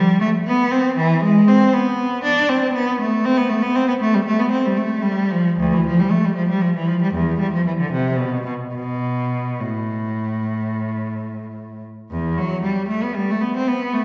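A lone bowed cello opens this short fragment of a baroque-style suite movement, its focused, rich tone sung with vibrato and placed up front as it ranges from D2 to D4. The line moves in a flexible, rubato 12/8 lilt, introspective and solemn, and its opening idea begins again at 12.1 s. A wet recital-hall reverb lingers around each note, lending the dark, mellow recording the bloom of a church or concert hall.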